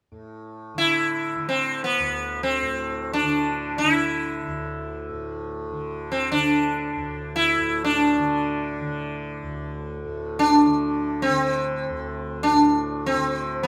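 Solemn and introspective, this fragment of a Hindustani classical performance unfolds in free time in raga Kafi on D, tuned to A4 = 439 Hz, and is cut from a longer piece. A softly plucked tanpura drone hums from 0.1 s between D2 and D3, its buzzing tone sitting low in the mix. At 0.8 s the sitar enters up front, plectrum-plucked between B3 and E4, its round, bright voice ringing with shimmering sympathetic strings under light reverb.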